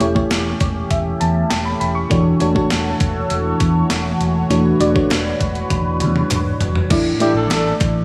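This excerpt from a 1980s-style pop track opens on a dark, round FM electric piano treated with chorus and phaser and set up front. Beneath it sit a swirling, nasal analog pad, a punchy fingered bass and a thumpy, tape-toned 12-bit drum machine with gated reverb. The mood is urgent and moody at 100 BPM in a straight 4/4, with the electric piano playing a fill near the start as the harmony moves from A7/E to Dmaj7/E. A very quiet, crisp group handclap joins at 0.3 seconds, alongside the kit's tambourine, hi-hat, toms and crash. A drum fill leads into a new section at 6.9 seconds on Asus4, and at 7.2 seconds a tight, smooth-topped horn section with light vibrato and octave doubling adds brief stabs, all within a light studio reverb.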